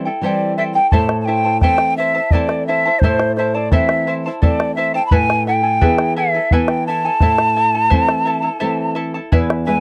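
Melancholic and wistful, this short cut from a longer Andean folk piece in a straight 3/4 sets an airy, hollow cane quena up front with vibrato over a shimmering fingerpicked charango and a dark classical nylon-string guitar, while a round, close bombo joins at 0.9 seconds, all caught in a dry, close 1970s-style studio sound with a brief break at 8.6 seconds.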